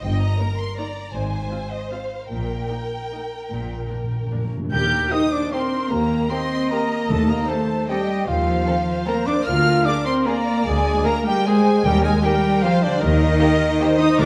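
In a rubato 3/4 swaying between 139 and 171 BPM, this elegant, sweeping orchestral ballroom waltz in Eb major, cut from a longer piece, opens with lush vibrato violins carrying the melody over a second violin line, smooth violas, background cellos and focused double basses; timpani join with a fill at 3.5 seconds, and from 4.7 seconds a hollow flute line, mellow French horn chords and soft-attack trumpet stabs fill out the sound in a dark, reverberant recital hall.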